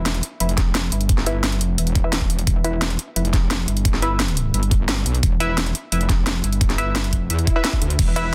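A straight 174 BPM pulse in 4/4 drives this dark, aggressive technical drum and bass excerpt in E phrygian, with an overdriven kit of cracking snare, bright hats and crash sitting up front beside a knocking electronic kick that joins at 0.6 seconds, both carrying a small-room character. Beneath them a metallic FM wobble bass, saturated and pumping with sidechain, churns low, while muted, detuned sawtooth dub chord stabs with a filter sweep drift through chorus and digital delay on top. A very quiet electronic swell appears near the end, and a deep, moody ambient pad surfaces barely audibly at 8.0 seconds within a dense, heavily limited digital master.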